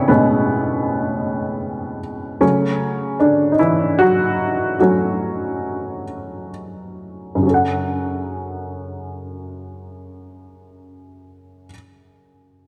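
Melancholic and aching, this short pop fragment, cut from a longer piece, rests entirely on a dark upright piano playing accompaniment in a straight 6/8. The piano sounds worn and woody, slightly detuned, with a boxy short sustain and audible action noise that keeps it intimate and up front. It plays alone from the start, moving from an Amaj7 chord to F# minor at 2.4 seconds, where the pulse begins slowing down until 7.4 seconds. A contrasting passage follows from 7.4 seconds. A moderate concert-hall reverb blends with a small-room ambience, giving the close instrument a sense of space around it.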